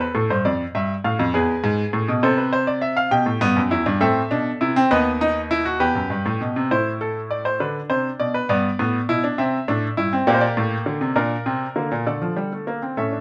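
A clear baby grand piano carries this short, contemplative classical excerpt alone, playing a baroque-style fugue in four parts that lasts about 13.2 seconds and is cut from a longer piece. The mood is serious and inward, set in 6/8 with a straight feel at an unhurried pace. The piano sounds natural and up front, its notes ringing with short sustain across a span from D#2 to G5. The harmony moves steadily through minor-leaning chords, opening on Dm/F and passing through Am, Em and B/D# before a second section begins at 6.7 seconds and turns toward Bm, G, C and Gm. It closes on an unresolved Asus4/D, and light reverb gives the instrument a modest sense of space.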